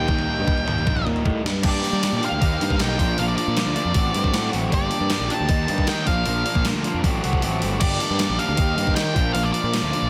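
Indie rock in G minor at 156 BPM, cool and bittersweet, where a dark, fuzzy octave lead guitar sits up front over two overdriven picked guitars in the background (one bright with chorus and slapback, one hollow-bodied with spring reverb), a round, fuzzed picked bass, a thumpy gated 80s drum machine with a gated snare that plays a fill at 1.2 seconds, and a buzzy, very quiet combo organ entering at 1.6 seconds on chords cycling through Gmadd9, Eb6, Bbmaj7 and D7sus4/A, with the kick and snare dropping out briefly at 7.4 seconds in a dense, heavily limited mix.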